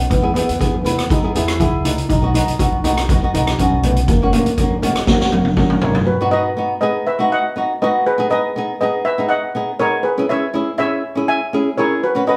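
A shimmering, metallic steel pan, played with medium rubber sticks, carries the melody up front in this sunny, carefree calypso. Beside it sits a fingerpicked flamenco guitar with audible finger squeak. For the first 6 seconds, a woody pizzicato upright bass, a street-band drum kit with a high-tuned snare and boomy kick, and soft-handed, ringing congas in the background fill out the groove, with a drum fill from 5.1 s; after 6.1 s the pan and guitar carry on alone, all heard in the moderate reverb of a large studio where the band plays live in one room, cut from a longer piece.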